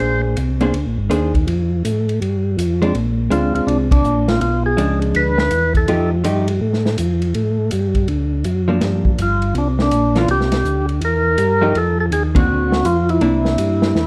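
Soul jazz organ trio at 163 BPM, a greasy, swinging excerpt in 4/4 with a firm swing on the eighths, moving through rich chords such as Bb9, Gm7, C9 and D7alt. A tonewheel organ holds down the bass through a slow rotary speaker with smooth vibrato, while a second, percussive tonewheel organ carries the melody with key click and second-harmonic percussion. A clean, compressed hollow-body electric guitar comps darkly beneath, and an acoustic drum kit enters at 0.4 seconds with dark cymbals, a tight kick and a rolled-off top, all in a dark, lightly reverberant production punctuated by band accents at 3.9 and 12.3 seconds.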